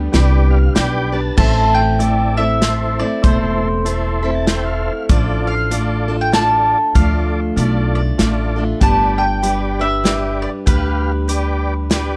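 A bright, full-bodied picked acoustic guitar, thumpy upright bass and a very quiet, floating bowed string section open this dusty, lonesome honky-tonk and classic country cut in a swung three, the strings dropping out at 1.3 s while a polished, punchy acoustic drum kit sits up front and a smooth tonewheel organ with chorus vibrato and key click adds fills, before a woody, double-strung mandolin takes the melody from 1.4 s in a dry, close-sounding excerpt.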